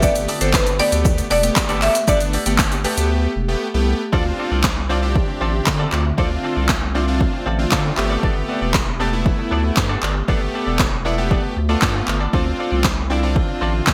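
A straight 4/4 groove at 117 BPM drives this confident, energetic dance-pop piece in D dorian. It is cut from a longer track and set in a bright 1980s-style digital production with light reverb. A punchy analog drum machine sits up front with kick, snare, handclaps, hi-hat and shaker, wrapped in gated reverb, with a short room on its snare, clap and hats. A saturated, thick sine sub bass pumps with sidechain beneath a fat, detuned sawtooth polysynth that also pumps. A twangy, direct-recorded clean electric guitar riff shimmers with lush chorus, and a very quiet, ethereal airy pad holds sustained chords behind everything. A woody marimba played with hard mallets carries a short, dry melody until 2.6 seconds, while a distant, grainy egg shaker continues until 3.1 seconds. A brief silent gap then opens at 3.1 seconds before the band returns and the harmony moves between Gadd9 and Dm7.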